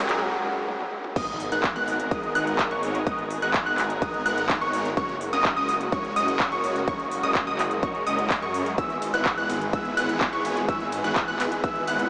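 A straight 4/4 pulse at 126 BPM drives this anthemic, euphoric slice of festival progressive house in G# minor, cut from a longer piece. It opens on a brief build-up, with a drum fill, a very quiet electronic riser and a short break, before the drop lands at 1.2 s with an impact. From there a punchy, up-front electronic kick joins the kit's handclaps, metallic hats, ride, crash and toms, all heard in small room ambience. Huge, bright supersaw chords with phaser, cassette tape grit and analog delay carry the riff through changes from F#add9 to G#madd9 and E/G#. Alongside them, a lush unison pluck plays high arpeggios with a filter sweep and delay, while a thick, saturated detuned saw bass with chorus anchors the low end. Deep in the background, a dark, woody symphonic string section holds sustained bowed chords with vibrato, and sidechain pumping breathes through the strings, supersaws, pluck and bass, all soaked in a vast, dreamy reverb that still has a small-speaker sound.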